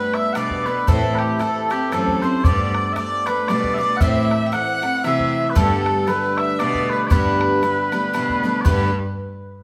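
This Celtic folk waltz in 3/4 moves at a lively 116 BPM in G major, with a swung lilt and a sunny, bright mood, cut from a longer piece. Mellow small bagpipes carry the sweet, continuous melody up front with vibrato. A rich, earthy fiddle and a hammered cimbalom, ringing softly in the background, add second lines above the accompaniment. A picked twelve-string acoustic guitar with fresh, octave-doubled strings sits forward with a shimmering sparkle. An open, boomy bodhran drums close from 0.1 s, and a distant, intense bowed cello with a biting edge supplies the bass from 0.4 s. The band plays live together in a large studio with moderate reverb, cycling between Gadd9 and Am.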